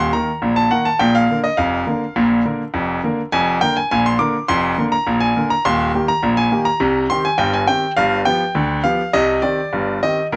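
Jaunty and playful, this short cut from a longer ragtime piano piece moves at 103 BPM in a straight 2/4 in Bb major. A solo bright grand piano spans a broad range and sounds brilliant, intimate and up front, with audible action noise and a moderate small-room reverb captured by close, detailed microphones. The harmony passes through Bb/F, Eb, Cm and G7 before returning to Cm at 9.1 seconds.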